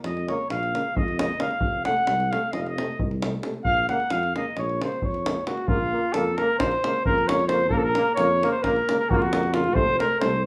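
Driven by a restless 9/8 pulse on a deep, small-room davul, this virtuosic Balkan brass band fragment puts a warm, roomy flugelhorn up front, soloing through the first 5.7 seconds over a dark, close-miked tuba bass, a distant trombone with light vibrato and a mellow euphonium in the background, all within a moderate studio ambience and a rough home-demo mix.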